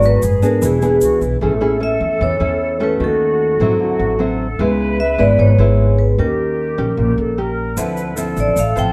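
A straight, easy bossa nova groove in 4/4 sets a relaxed, sophisticated mood in this short cut from a longer piece, with an egg shaker adding a grainy, bright tick close up only until 1.4 seconds and again from 7.8 seconds. The vibraphone carries the melody with medium mallets and the motor off, its metallic, ringing tone close-miked, dry and full. Behind it, a mellow flute section plays a soft, distant second line, pure and hollow with vibrato and a soft attack. The nylon-string guitar sits up front with dark, woody, fingerpicked classical accompaniment on old strings, while the upright bass underpins it with thumpy pizzicato on steel strings. The harmony moves through rich colours such as G#m7b5, Amaj7, D9 and Dm9, and light reverb gives the sense of a band playing live in one room.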